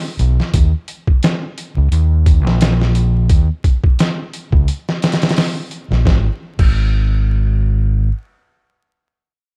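Dark, dry production dusted with vinyl crackle frames this hypnotic, smoky trip hop fragment at 87 BPM in 4/4 with a light 16th-note swing, where a gritty, compressed, pitched-down sampler-style drum kit (thumpy kick, medium-tuned snare, hi-hat, crash cymbal and a touch of studio reverb) sits up front beside a punchy, amped, overdriven fingered electric bass moving between G#1 and D#2; both enter at 0.2 seconds, the drums stop at 6.8 seconds, and the bass carries on to 8.1 seconds.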